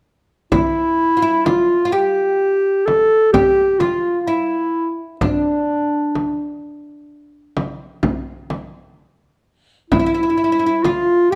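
Arabic maqam ensemble music in a soulful, melancholic 10/8, cut from a longer piece, with a mellow, classical-style clarinet carrying the melody up front, a bright, woody fretless oud plucked with a plectrum on double strings beneath it as a quieter second line, and a deep, large frame drum played with hard hands close at hand, the trio heard in a moderate recital hall reverb.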